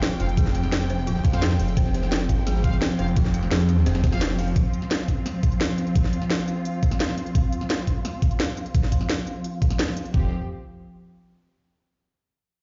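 A swirling, thick, detuned sawtooth bass sits up front in this dark, futuristic drum and bass fragment at 172 BPM in F minor. Colored by phaser, tube saturation and sidechain pumping, it drops out at 4.5 seconds and returns briefly near the close. A knocking electronic kick, equally forward, drives the straight 4/4 beside a layered drum and bass kit with a cracking snare and crisp hats. Through the opening seconds, a very quiet, compressed breakbeat kit with a high-tuned snare adds a gritty edge. A lush bowed string section holds smooth, close sustained chords with vibrato, shaped by a low-pass filter sweep and pumping. In the background, an eerie, inharmonic FM bell plays warbling arpeggios through chorus and tape echo, while a clear brass ensemble adds tight, soft-attack stabs, all heard as if played on a big sound system in a bare room with large reverb and a dulled top end.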